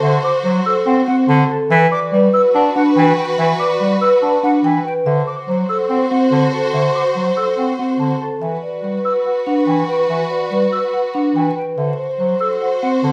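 Set back in a reverberant large studio with a vinyl crackle, this propulsive, bright excerpt of minimalist classical pattern music in G major moves at 143 BPM in 4/4 over alternating D7 and Gmaj7 chords, as a clear bass clarinet accompaniment sits up front, a soft-mallet vibraphone rings out metallic arpeggios, an airy flute with vibrato joins the arpeggios at 0.2 s, a rich bowed string section holds lush sustained chords, a mellow French horn carries a second line in the background, and a woody marimba plays the melody from further back.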